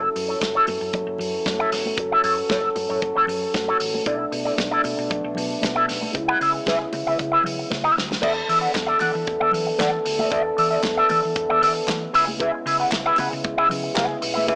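A twangy electric guitar run through an envelope filter with wah sits up front in this glamorous, danceable disco excerpt, playing clean, fingered accompaniment at 115 BPM in a straight 4/4. Behind it, a dark, distant French horn section holds roomy, classical-style sustained chords, while a round, hollow-body short-scale electric bass anchors the low end with an amped tone. A soul drum kit with a tight kick, medium-tuned snare, hi-hat, crash and dark cymbals comes in at 0.2 seconds, its sound mid-forward with a rolled-off top, joined at 0.4 seconds by high-tuned, thick-skinned congas played with soft hands, close and dry in the background. The harmony moves from F#m7 through Bm7 and C#m7, and a drum fill at 7.7 seconds leads into a new section on E7sus4, where hollow group handclaps enter at 8.8 seconds. Light reverb and a small-room ambience frame the whole mix, which carries a small-speaker character.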